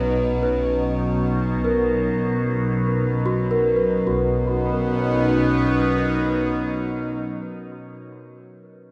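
An evolving, detuned wavetable pad sits up front in this luminous ambient passage in free time and B major, holding sustained chords through a phaser and its own reverb. Above it a bright, bell-like celesta plays delicate arpeggios through tape echo, while a veiled double bass section, bowed con sordino, holds a low B until 6.5 seconds and a warbling vintage analog drone with chorus sustains beneath. A long plate reverb gives the mix its echo-heavy sound, and the passage is cut from a longer piece.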